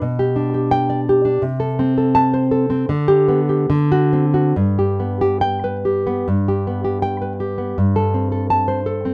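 Romantic solo classical guitar in G major, tender and nostalgic, with a nylon-string guitar played in a rubato 2/4 at 67-87 BPM, its dark, full-bodied, thumb-plucked tone sitting up front with audible finger squeak across a range from G2 to A5, moving through chords such as G/B, Am/C, D7 and Am7/G in a dry, close 1970s-style studio sound with light reverb, cut from a longer piece.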